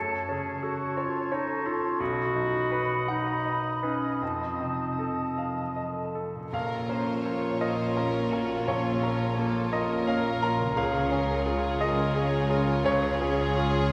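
Cinematic, emotional film score for orchestra in a rubato 6/8, hopeful and tender, opening with a bright, polished baby grand piano and a ringing concert harp beneath a clear solo clarinet, an airy, hollow flute and a soft-attack oboe, the winds falling away at 6.2 s. At 6.5 s the strings take over: a floating, pure violin section carries the melody, joined by an intimate studio violin section with light vibrato on a second line, while woody, dark violas, distant cellos and lush double basses settle underneath, all bowed sul tasto. The piano stays close and present with audible action noise, and the whole passage sits back in a wet concert hall reverb until the cut at 13.9 s.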